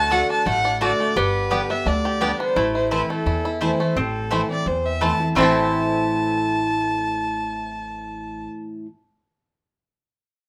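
Rustic and haunting, this brisk bluegrass passage in A dorian runs at 171 BPM in straight 4/4, moving from D to G to Am. A dark, woody fiddle sits up front carrying the melody with light vibrato and portamento, while a twangy, percussive fingerpicked banjo shares the tune and a metallic, nasal lap resonator guitar plays a slide second line in the background. Beneath them, a full-bodied dreadnought steel-string guitar with old strings picks the accompaniment, a mandolin adds double-string stabs from 0.1 seconds, and a thumpy pizzicato upright bass anchors the low end, all in a moderate studio reverb.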